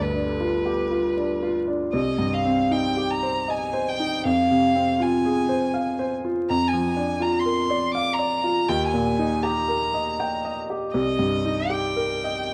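A warm, smooth violin with vibrato carries a lyrical, serene melody up front in this romantic classical duo, moving at 79 BPM in a rubato 3/4 and settling into Eb major from 6.5 seconds. A clear grand piano with a vintage, short-sustained tone accompanies it through a progression from G7 to Cm7 across the 12.5-second cut from a longer piece. Close, detailed microphones catch both parts in light reverb, with vinyl crackle beneath.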